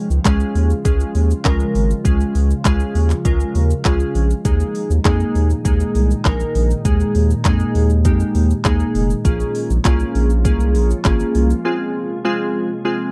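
Driving and energetic, this 100 BPM dance-pop excerpt pairs glassy digital keys with chorus and a filter sweep against a mellow, ethereal FM pad drifting in the background, while a thick, saturated sub bass and an organic electronic drum kit with a deep kick, woody snare, crisp hats, handclaps and shaker push the groove up front, with the keys, pad and bass pumping through sidechain over a Db, Ebsus4 and Bbm7 progression until the bass and drums drop out around 11.5 seconds for a brief break on Fm.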